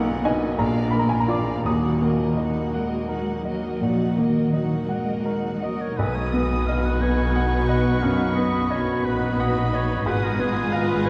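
A bright, brilliant baby grand piano carries the melody from the very start of this tragic, brooding romantic movement for piano and orchestra, cut from a longer piece and flowing in a rubato 12/8. Beneath it, a smooth, even violin section sings a second line, a very quiet, expressive viola section accompanies, a subdued French horn section holds sustained chords, and a warm cello section with portamento supplies the bass. At 5.6 seconds a punchy, clear oboe solo adds another line. From 6.0 seconds the texture grows fuller: a focused, distant violin section also carries the melody high above, a pure flute in the background and a mellow, close-miked clarinet add second lines, and a lush symphonic double bass section deepens the low end. The piano stays up front throughout, and a long, wet cathedral reverb shapes the dark production.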